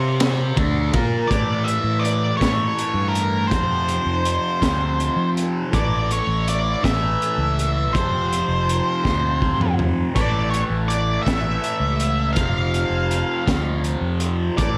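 A slow, hypnotic 6/8 lilt at 54 BPM drives this mysterious psychedelic rock excerpt, where a bright, double-tracked fuzz guitar riff with phaser and a round, amped fingered bass open together, a gritty breakbeat kit with a punchy kick, high-tuned snare and dark cymbals joins at 0.2 seconds and rolls through a fill at 9.0 seconds, and a dark octave-fuzz lead guitar with slapback echo takes up the melody from 1.3 seconds, all set in a small room.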